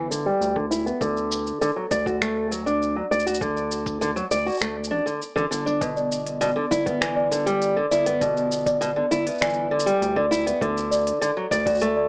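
A woody, boxy fingerpicked old ladder-braced acoustic guitar sits up front with arpeggios roughened by 12-bit sampler grit, tape echo and a filter sweep, over a round analog bass, finger snaps, crisp hi-hat and shaker from an organic electronic kit, and a muffled, thumpy kick in the background, with a bell-like celesta joining at 6.0 s in this pastoral, hopeful folktronica piece in D major at 100 BPM, heard through a small-speaker sound with a wet studio ambience.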